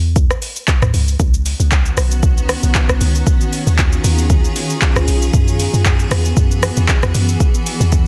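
An amapiano cut opens on a deep, round log drum bass, percussive and dark with a fast attack and a noisy FM edge, joined at 0.2 seconds by an up-front electronic drum kit of deep kick, metallic hi-hats, handclaps, rim clicks, shaker and toms, all swung at 116 BPM in 4/4. From 1.7 seconds a quieter granular pad drifts in, bright, cloudy and detuned with a slow attack, built-in reverb and sidechain pumping, as the chords move from C#m through suspended ninth chords on C#, D#, F# and E. The mood is deep and hypnotic, the mix dry, dense and heavily limited, and the clip is cut from a longer piece.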